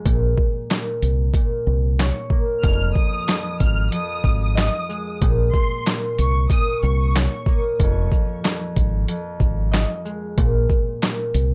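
A filtered, tape-worn concert harp rings out first over Bbm and Fm7, soon joined by a round, dark fingered electric bass and a gritty, pitched-down boom-bap kit with thumpy kick, handclaps, shaker and hat swinging at 93 BPM in F minor, while a lush bowed violin section with vibrato and digital delay floats high between 2.6 and 7.1 seconds in this dark, moody, dry hip-hop excerpt.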